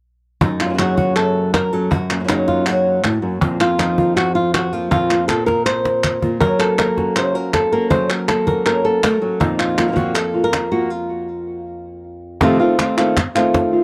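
An up-front, fingerpicked flamenco guitar carries the melody with a touch of tape echo, while a second, boxier flamenco guitar plays chord stabs with audible finger squeak, moving between Gb and Fsus4 before landing on F7. Woody cajon struck with hard hands and crisp, band-limited palmas drive this dramatic, fiery flamenco fragment, which has a drum fill at 5.9 seconds and a stop from 10.9 to 12.4 seconds. The sound is dry and close, a 1970s-style small-room recording with a faint mains hum beneath it.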